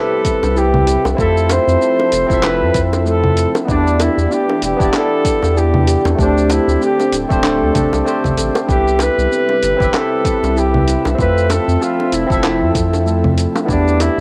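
Recorded at home on cassette and steeped in moderate spring reverb, this sunny, relaxed sunset chillout excerpt swings gently as a warm, roomy flugelhorn carries the solo melody up front through analog delay and shimmer reverb, over a bright, barky tine electric piano and a very quiet, lush, detuned unison pad. A round, deep analog bass sits up front beneath a punchy, layered electronic kick and a gritty, compressed sampler-style soul kit of congas, handclaps, hi-hat and shaker, while tight, high-tuned bongos and a woody, ringing kalimba playing arpeggios stay in the background. The chords drift from Cmaj7 through Fmaj7 and Em7 to D7sus4 before circling back.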